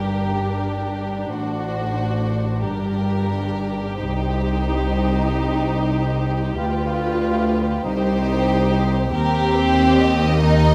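Classical slow romantic movement for string orchestra, taken from a longer piece, tender and serene in a rubato 6/8: a warm violin section sings the melody over a rich second violin line, with dusky violas bowed sul tasto with soft attack and light vibrato, cellos playing sul tasto with gentle vibrato, and a pure, floating double bass section laying a smooth bass underneath, the violins, violas and cellos heard close and intimate, all within a moderate scoring-stage reverb.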